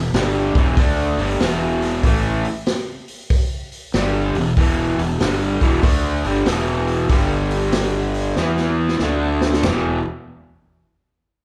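A raw, overdriven garage guitar leads this brooding, gritty slice of blues rock and southern rock, its bright, double-tracked picking sitting up front as it drives a riff in E minor. The tempo is 95 BPM in 4/4 with a swung eighth-note feel, and the harmony moves from Em through G5, E5 and D5 before landing back on E5. Beneath it, a fingered electric bass adds a growly, fuzz-laden low end. A vintage acoustic kit brings a punchy kick, a medium-tuned snare, hi-hat, toms and crash cymbal, its rolled-off top giving the drums a natural, rounded character close in the mix. A drum fill runs from 8.4 to 9.6 seconds, leading into a new section just before the excerpt cuts off. The trio sounds like a band playing live in one large studio room, with a moderate reverb tail of 1.2 seconds.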